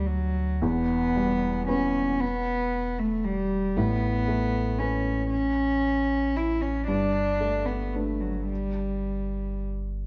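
Neoclassical piano and strings in 3/4 at 114 BPM, this short, intimate and hopeful excerpt moves with uneven, rubato beats and is tuned to A4 = 439 Hz. A felt-muted upright piano carries the accompaniment across a span from E2 to B4, its tone soft, mellow and natural. Up front, a single bowed cello plays the second line sul tasto between F#3 and E4, with a soft attack, a pure, floating sound and a smooth top, falling silent at 9.6 seconds. Beneath them, a pure sine sub bass sustains deep, clean notes from E1 to D2. The harmony moves from D through Em, reaching Aadd9 at 3.8 seconds and Gadd9 at 6.9 seconds, all set in a dark, warm production with light reverb.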